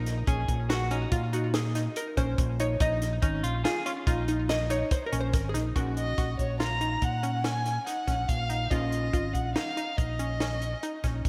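Moving in a straight, driving 7/4, this tense progressive instrumental excerpt rides on a punchy, high-tuned cocktail drum kit and a round, amped fingered electric bass, both up front. A clean, hollow-body jazz guitar takes the spotlight as soloist for the opening 5.8 seconds over detuned, wave-folded analog pluck arpeggios with chorus, slapback echo and delay, while a picked clean electric guitar with delay adds a second line until 4.4 seconds. At 6.0 seconds a dark, woody bowed violin with vibrato carries the melody, and a lush hall reverb gives the whole band a big arena sound.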